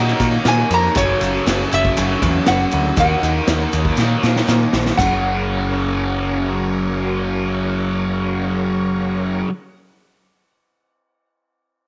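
A straight 4/4 groove drives this trippy, mysterious psychedelic rock excerpt, cut from a longer piece. A distant, roomy vintage drum kit with dark cymbals and a punchy kick rolls through a fill from 4.0 s, and it and the very quiet, grainy maracas drop out at about 5 s. Up front, a double-tracked fuzz guitar riff with phaser sits over a round, dark dub bass, while a metallic, nasal resonator slide guitar carries the melody through tape echo and a shouting, lightly overdriven tonewheel organ holds sustained chords in the background on a slow rotary speaker, moving from D#m7 and F#m to an F# chord in a small, lightly reverberant room.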